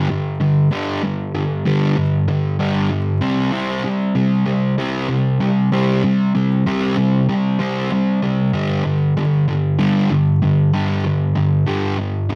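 A dark, double-tracked fuzz guitar plays alone up front in this carefree, wistful rock excerpt, its picked G5 and C5 power chords carrying tape-worn distortion through a wet studio reverb, with the lo-fi haze of a cassette home recording and a bed of vinyl crackle.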